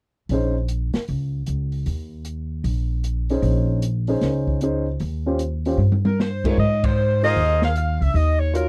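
Big band swing jazz with a joyful mood, cut from a longer piece and recorded dry and close in a 1970s studio style, features woody pizzicato upright bass and a dark, smooth drum kit swinging throughout, an intimate grand piano with audible action noise accompanying, a tight, warm saxophone section with vibrato taking the melody from 6.1 seconds, and brilliant trumpet section stabs at 7.2 seconds.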